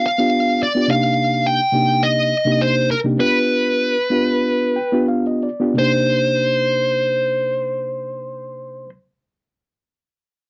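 A smooth, overdriven electric lead guitar carries the melody up front with a bright, picked tone in this soulful, brooding blues excerpt, its lightly swung line moving over G7 and Cm7 chords. A reedy, worn and slightly out-of-tune electric piano, lightly overdriven through its built-in speakers, accompanies throughout and adds a fill from 4.4 to 5.8 seconds as the pace slows. The dry, close sound has the feel of a 1970s studio, with only light reverb.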